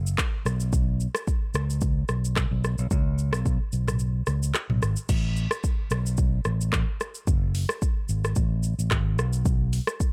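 Sunny and joyful, this short afrobeats fragment in A major moves at 110 BPM with a light 16th-note swing, pairing an amped, up-front fingered electric bass in its low register with a layered electronic deep house kit of deep kick, metallic hi-hats, shaker, handclaps, rim clicks, toms and crash, in a dry close sound where the kick drops out from 4.0 to 5.1 seconds before the second section begins.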